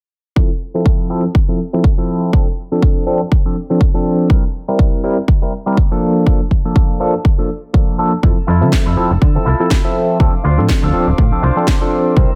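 A barky, gritty overdriven tine electric piano, pumping against a punchy up-front electronic kick, carries this funky, feel-good filtered disco house excerpt from 0.4 seconds. It runs at 122 BPM in F major with a 16th-note swing over Fmaj7, Dm7, C7 and Bbmaj7 chords, and a filter sweep spans the whole passage. At 8.2 seconds a snappy, metallic FM bass and a rich, reedy chamber violin section in the background join, followed shortly by a twangy envelope-filtered guitar riff and a cracking electronic snare, all set in light digital reverb.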